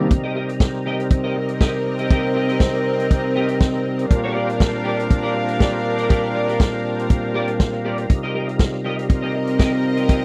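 A driving, danceable disco groove in a straight four, cut from a longer piece and captured as a dry, close 1970s-style studio recording in a small room. An up-front vintage drum kit with a punchy kick, medium-tuned snare and hi-hat carries the beat beneath gritty, overdriven tonewheel organ chords that turn through slow rotary speaker and chorus vibrato, while a dark, clean picked electric guitar with analog chorus adds accompaniment. From 1.1 seconds a clear, floating string section enters with a soft bowed attack, laying a second line over the Cm7 and Bb6 changes.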